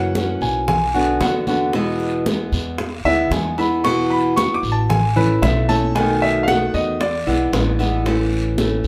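Latin Cuban son and guajira with a sunny, danceable feel at 114 BPM in a straight 4/4, heard as a short excerpt from a longer piece. A bright, fingerpicked flamenco guitar sits up front with audible finger squeak, while a clear, polished concert grand piano takes a solo of arpeggios from 0.0 to 8.0 seconds over a woody, thumpy pizzicato upright bass on gut strings. Tight bongos and damped, high-tuned congas played with hard hands stay in the background alongside a raspy guiro, all caught as a band playing live in one room with a wet studio ambience, moving through chords such as Bm, E, A and B7.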